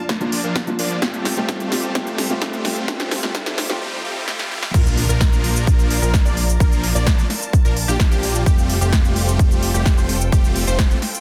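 Festival progressive house at 129 BPM in Bb major, this anthemic, euphoric excerpt from a longer piece moves from a build-up into a drop at 4.7 seconds, with chords shifting between Bb and Fadd9. A soft, felt-muted upright piano sits in the background with sidechain pumping and tape echo until 3.8 seconds. Alongside it, huge, detuned supersaw chords carry the riff through a filter sweep while drum fills roll and a very quiet electronic riser leads into an impact at the drop. The overdriven, punchy electronic kick sits up front, joined by a big-room kit of punchy snare, crisp hats, shaker and crash that was re-recorded in a large room. A fat, nasal analog bass pumps underneath, and from 4.7 seconds a bright, phased unison pluck adds arpeggios in the background as a very quiet, smooth symphonic string section holds sustained chords throughout. The mix is dense and heavily limited, set in a digital ambience.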